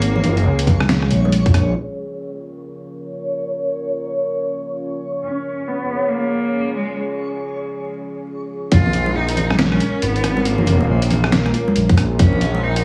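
A deep, moody ambient pad holds a Bb minor chord from the opening, alongside a reversed, dreamy swelling texture, a clear bowed cello with vibrato, a rumbling detuned saw bass and gritty, pitched-down sampler-style drums, while soft-handed congas and a tight, up-front electronic kick add weight. This heavy, dark slice of deep dubstep in Bb phrygian runs at 138 BPM with a swung half-time feel; the cello and congas carry a dub echo, and the pad is thickened by chorus and reverb. After the brief opening, the bass and beat fall away and a filter sweep unfolds over the pad and texture, with the cello returning at 5.2 seconds. A break follows once the texture stops at 7.0 seconds, then the drop at 8.7 seconds brings back the beating bass, the compressed, tape-toned kit, the ringing congas in the background and sparse kick hits. The whole mix sounds like a heavily compressed radio, with vinyl crackle, a low-pass filter, light reverb and small-room ambience, and it is cut from a longer piece.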